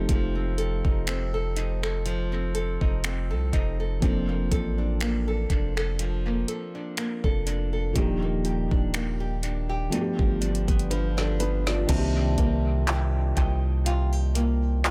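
Moody and late-night, this slow contemporary R&B excerpt at 61 BPM in C dorian pairs a dark, felt-muted upright piano with audible action noise and a bright, fingerpicked nylon-string guitar playing arpeggios, both steeped in dub echo, over a deep, sine-toned 808-style bass and an up-front electronic drum kit with a knocking kick, woody snare, metallic hats, finger snaps and handclaps, moving through F7, Bbmaj7/F, Ebmaj7 and G7 to a drum fill at 10.9 seconds before a pure FM synth bell with chorus and phaser enters in the background at 11.9 seconds over Cm7, all in a dry, echo-heavy mix.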